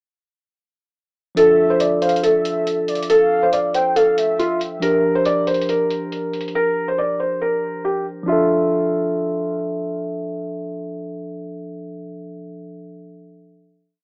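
Muffled like an AM radio through a rough home demo mix, this short, eerie and melancholic trap piece sets a felt-muted upright piano's soft, intimate looping melody over held open chords on a clean tine electric piano, while a velvety, detuned synth lead adds a sparse counter-melody with portamento until 4.8 s and a gritty, pitched-down electronic hi-hat drives a half-time beat with fast rolls until 6.5 s, as a filter sweep runs through the breakdown before the final chord lands at 8.3 s.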